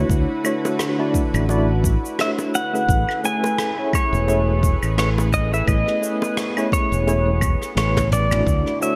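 A swung sixteenth-note groove from a deep, layered electronic kick and a soft brush kit with cabasa, claves, rim click and toms in gated reverb, plus tight high-tuned bongos in the background, carries this sunny sunset chillout excerpt over Dmaj9 and Amaj9 chords. A bright, up-front fingered electric bass anchors the low end, while a worn, slightly out-of-tune tine electric piano with tremolo and delay comps alongside a lush, detuned sawtooth pad with chorus. From 2.2 seconds a clean, compressed pedal steel guitar takes the melody with fingerpicked slide lines and volume swells, and a drum fill arrives at 7.8 seconds, all set in a bright 1980s-style digital production with plate reverb.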